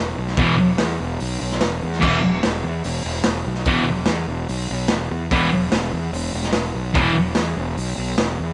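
Garage rock with a rowdy, swaggering strut at 146 BPM, cut from a longer piece, where a dark, overdriven fingered bass opens alone on an E5 chord before a gritty, saturated drum kit with dark cymbals and a punchy kick enters at 0.3 seconds and a bright, double-tracked fuzz guitar riff joins at 0.4 seconds, all up front in a small room with light reverb.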